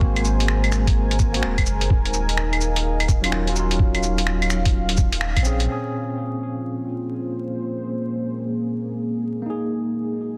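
Swung sixteenths at 127 BPM in 4/4 drive this wistful, ghostly future garage fragment in Bb minor, taken from a longer piece. A thumpy, muffled electronic kick anchors the groove, and a tape-warm, sampler-style kit sits up front with cabasa, claves, finger snaps and hi-hat, its hats and percussion low-pass filtered and its snare softly clipped and filtered. Beneath them a round sine sub bass pumps against the kick, while a clean tine electric piano with digital delay and a moody, detuned analog pad with chorus and a slow attack breathe through sidechain pumping over Ab7 and Ebm7. The whole band hits an accent at 5.2 seconds, and the kick drops out just after. By 5.7 seconds the bass and kit have fallen away too, leaving the piano and dark pad to drift over Bbm7 and Gb6/Bb through a dense, heavily limited master dusted with vinyl crackle.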